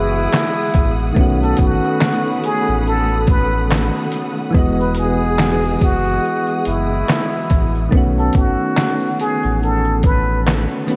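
Cosy and mellow, this lo-fi hip hop excerpt at 71 BPM in E major, swung on the 16ths, moves between Emaj9 and B7 as a breathy, plunger-muted trumpet carries a jazz-style melody up front over soft, round electric-piano-like synth keys with chorus and tremolo, while distant, woody strings hold sustained chords until 7.9 s, a deep sine sub bass anchors the low end, and a gritty, pitched-down sampler-style drum kit with thumpy kick, snare, hi-hat, shaker and handclaps enters at 0.3 s, the whole mix soaked in a dreamy cassette haze of huge reverb.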